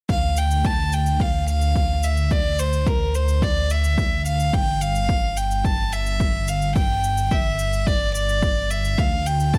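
Piano and strings electronica with a melancholic, cinematic mood, cut from a longer piece. A clear, floating violin played by one player carries the melody up front over a dark, detuned saw bass that rumbles and pumps with sidechain. A punchy, overdriven electronic kick drives the groove while an overdriven shaker sits in the background, both touched by studio reverb in a lightly reverberant space.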